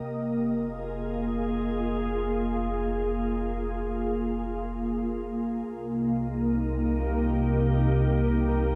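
Set in a vast, echoing cathedral-like space, this fragment of a longer ambient piece floats in free time with a weightless, warm mood, led by an up-front, glassy FM pad holding sustained chords through ensemble chorus over a deep, round sine sub bass. At 5.7 seconds the harmony moves from Fm to Cm7 as a filter sweep begins on the ethereal pad. At 8.5 seconds, very quiet, muted felt-like synth keys slip in with soft, intimate arpeggios.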